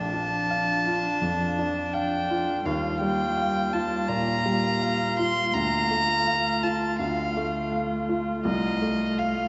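Neoclassical piano and strings in a hopeful, tender mood, unfolding in a rubato 4/4 across this short excerpt cut from a longer piece, with chords moving from Bbmaj7 through Ebadd9 and Bbmaj7/D to F7/C. A warm, airy violin carries the melody up front, played sul tasto with a soft attack, while a felt-muted upright piano gives mellow, intimate accompaniment alongside a rich, floating viola and a dark, woody cello line with vibrato sitting in the background. Beneath them a very quiet, warbling tape-like pad holds nostalgic sustained chords with chorus, and the whole ensemble sits in a wet concert hall with a 2.2-second reverb and a soft, dulled top end.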